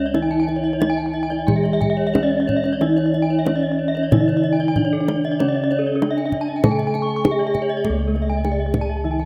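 A rough home-demo mix set in a lush hall reverb frames this shimmering, brilliant Balinese gamelan fragment, cut from a longer piece. A mellow, soft bronze metallophone carries the melody with padded mallets and paired tuning, over a dark, smooth metallophone accompaniment, round beating bossed gongs in the bass, and a tight, close, dry kendang played with soft hands. Two bright, airy metallophone parts ring out arpeggios with shimmering beats above, and the music moves into a new section at 7.8 seconds.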